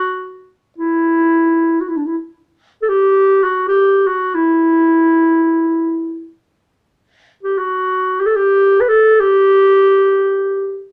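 Soulful and longing, this brief passage from a Turkish makam piece in free time features a mellow clarinet playing solo up front in a classical style, framed by moderate studio reverb.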